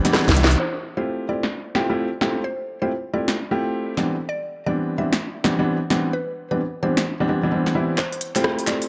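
A swung two-step garage groove at 130 BPM opens with a drum fill of cracking snare, crisp hats, rim clicks and handclaps up front, as an intimate baby grand piano with audible action noise stabs soulful Cmaj9 and Fmaj9 chords, a hollow organ-like FM bass note lands briefly at 0.3 seconds with a tight background kick, and a woody mallet-like synth pluck with chorus, phaser and dub echo carries a soft, sunny melody while the kick returns with another fill at 8.0 seconds in this short excerpt.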